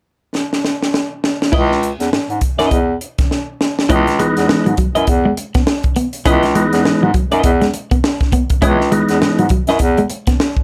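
Lightly reverberant and gritty, this excerpt of a hypnotic, sly funk groove at 102 BPM in C# minor swings its 16ths over a punchy, saturated fusion drum kit, which opens with a fill at 0.3 seconds before a clear, vintage-toned bass clarinet and a clean, compressed electric guitar with subtle chorus settle onto a C#m9 chord at 1.5 seconds. At 3.9 seconds a second, fingered clean guitar adds a riff with a vibrato effect, while a mellow, round tonewheel organ with percussion, light overdrive and a fast rotary speaker throws in up-front stabs.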